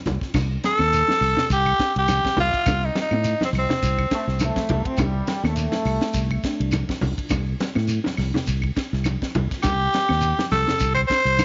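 Intense and driving, this afrobeat excerpt in C dorian moves at 103 BPM with a light swing, built on a round, dark fingered electric bass up front and a tight, dry funk kit with bright cymbals, while congas, shekere, woody claves and a ringing, meditative handpan playing arpeggios sit in the background, a raspy, growling tenor saxophone carries the melody from 0.7 to 4.7 seconds and returns at 9.6 seconds, and a punchy, clear trombone section adds a second line between 4.1 and 6.7 seconds, all in a small room with light reverb.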